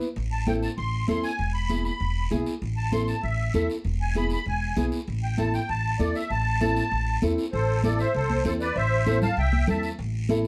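Fingerpicked nylon-string guitar with audible finger squeak and a raspy, saturated guiro open this fiery, danceable cumbia fragment, joined at 0.2 seconds by a woody pizzicato upright bass up front and soft-handed, high-tuned congas in the background, before a reedy, shimmering musette accordion carries the melody from 0.3 seconds over alternating A minor and E chords, all set in a dark production with moderate studio reverb.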